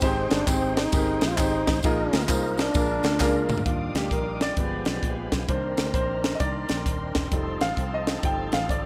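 Reverent and jubilant, this short uptempo gospel excerpt in Eb major swings at 131 BPM, with a breathy, whispered trombone melody, tambourine and handclaps, and a crisp drum kit with a high-tuned snare and punchy kick that plays a fill from 3.2 s, before the woody upright piano takes a solo at 3.7 s over gritty overdriven organ with slow rotary speaker, a round, dark fingered electric bass, and reedy gut-string strings sitting in the background, all in a moderate recital hall reverb.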